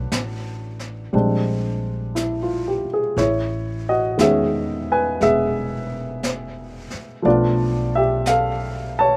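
An intimate baby grand piano sits up front, its short sustain, slapback echo and audible action noise carrying a wistful jazz ballad at a slow, swung 59 BPM in 4/4 through chords such as Bm9, Bb13 and Amaj9#11. Beneath it, a woody, thumpy upright bass with gut strings plays pizzicato, while a distant, roomy brush kit adds a high-tuned snare and hi-hat with a rolled-off top from 0.1 seconds. The overall sound is dry in this short cut from a longer piece.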